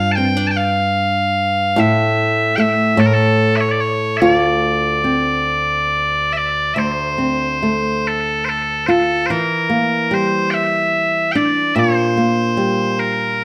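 Celtic folk in the form of a slow air, this short excerpt carries a longing, mournful mood in D minor, moving at 48 beats per minute in a rubato 6/8 with uneven, flexible beats. Loud bagpipes carry the melody throughout, their bright, piercing, continuous tone sitting up front as a solo voice between A4 and A5, colored by a slapback echo. A fingerpicked nylon-string guitar accompanies from start to finish, its woody, small sound on old strings placed close and up front, ranging from D2 to F4. The harmony drifts from G5 and A5 through a chordless passage into Dm7, then shifts at 9.3 seconds to Em7b5 before settling on Bb5. Close, detailed microphones and light reverb keep the pair intimate, with the piece moving from its opening section into a second one at 6.8 seconds.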